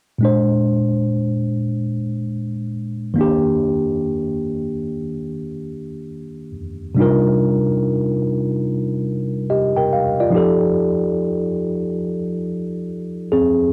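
Hip hop with a nostalgic, hazy mood, taken from a longer piece and moving at 71 BPM in 4/4 with a 59% swing on the sixteenths. A mellow tine electric piano carries the accompaniment from 0.2 to 13.7 seconds, its worn, slightly out-of-tune tone sitting up front and direct as it moves through Bb9, Ebmaj7, Cm11 and F9. The home cassette recording adds tape character, and a moderate small-room reverb gives the sound a modest sense of space.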